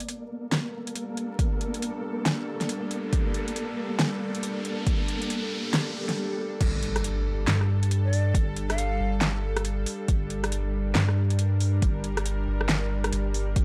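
A layered deep house kit with fat snare and metallic hats and a flickering grainy texture open this brooding, cavernous deep dubstep cut in G minor at 138 BPM with a swung half-time feel, the texture stopping at 6.2 seconds. A tense string-like drone with vibrato and built-in reverb follows at 0.7 seconds, and a punchy, overdriven electronic kick enters at 1.4 seconds to anchor the groove. These are joined by an electronic riser, swell and impact around the build-up, a round sub bass arriving with the drop at 6.6 seconds, and a brief breathy ney phrase carried on dub echo, all heard through a dry, gritty hardware recording with vinyl crackle.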